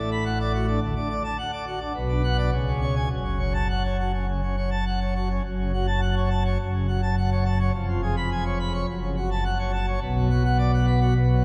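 Jubilant and brilliant, this short cut from a longer classical organ toccata in straight 4/4 features a solo pipe organ on full plenum with mixtures, its romantic voicing sitting up front and spanning a deep E#1 to a high B5, all bathed in a wet church reverb with a 3.6 s decay as the harmony moves from an opening Bm7/A through a C#7/E# at 7.7 s back to F# minor.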